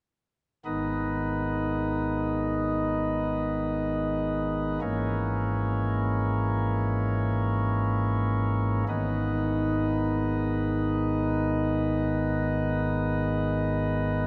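Dark and grave, this classical chorale-style fragment cut from a longer piece unfolds in free time on a solo pipe organ. Its flute stops sound light and sparkling with a baroque voicing, sitting up front and spanning from the low depths to the middle register between 0.7 and 14.3 seconds. A cathedral reverb lingers for about 5.0 seconds, bathing the slow harmonic motion that departs from and returns to its home minor chord.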